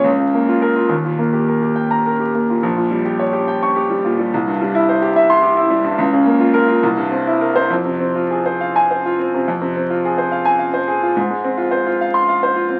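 A bright, up-front concert grand piano opens this short cut from a longer virtuoso piano study in F minor, playing solo in a rubato 6/8 at about 71 BPM counted in dotted quarters, its natural tone reaching down into a deep bass. The mood is heroic and brilliant, with the harmony moving from Bbm/Db through Eb, C and C7 to settle on Fm at 7.7 seconds, before a new section begins at 9.5 seconds. The sound carries the crackle of a very old 78 rpm record and a wet studio reverb.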